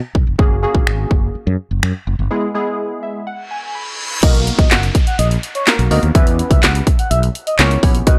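A straight 4/4 house groove at 125 BPM drives this carefree, summery dance-pop clip in B major, with a punchy, up-front drum kit of kick, cracking snare, finger snaps, handclaps, hi-hat and crash over a round, dark fretless bass that pumps with sidechain compression, while glassy, detuned, filter-swept digital keys with chorus enter at 0.4 seconds and fill the break, a reverse cymbal and downlifter enter at 3.5 seconds, and a smooth, expressive sawtooth lead with vibrato, chorus and tape echo arrives on the drop at 4.2 seconds, the whole mix dry and gritty with transformer saturation.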